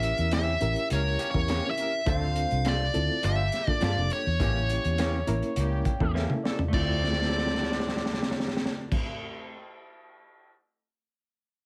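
A smoky, soulful soul blues in D minor at 103 BPM opens on a rootless A7b9, with a dark, smooth overdriven lead guitar singing the melody up front over a gritty reed electric piano with fast tremolo, a round, foam-muted fingered bass and a crunchy breakbeat kit with a high-tuned snare and dark cymbals. Tucked in the background, a bright, tight horn section holds sustained chords in octaves while a twangy, lo-fi guitar through a small old amp adds stabs from 0.3 seconds, all set in a light reverb. The electric piano plays a fill at 5.6 seconds and the drums add a fill at 6.1 seconds, leading to a new section on Dm7 at 6.7 seconds in this short cut from a longer piece.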